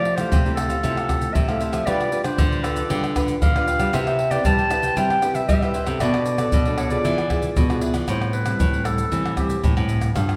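A distant, roomy clarinet carries a nostalgic yet lively samba-choro melody in A minor at 116 BPM over crisp picked cavaquinho in the background, two fingerpicked nylon-string guitars with audible finger squeak (one on accompaniment, one on bass), and close, dry, up-front pandeiro, tube shaker, tamborim and tight surdo played with soft hands, all set in a large studio reverb heard from further back in the room, before the cavaquinho stops at 8.1 seconds and the clarinet takes a solo over an Am7 to the end of this cut from a longer piece.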